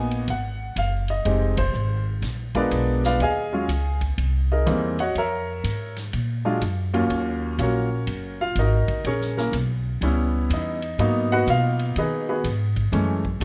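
Cool, smoky jazz piano trio swinging in Eb minor at 123 BPM, with a clear, intimate baby grand carrying the melody up front under plate reverb, its action noise audible, beside a woody pizzicato upright bass, while a big-room drum kit of hi-hat, punchy kick, snare and ride enters at 0.1 seconds and sits further back, the band hitting an accent at 1.5 seconds before the passage moves from altered dominant colours into darker minor chords at 7.1 seconds.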